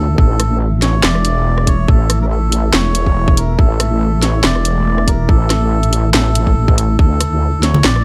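A half-time 141 BPM groove with swung sixteenths drives this brooding, heavy deep dubstep fragment, where an overdriven pairing of a tight electronic kick and an up-front garage kit of handclaps, hi-hat, rim click and cracking snare runs alongside a detuned sawtooth wobble bass with chorus and tube saturation, while a reedy, breathy melodica line trails dub echo above a dark, warbling ambient pad of sustained chords carrying its own reverb, and a brief burst of hard-hand congas lands at 7.7 seconds in a dry room as the harmony moves from A5 to Dmadd9.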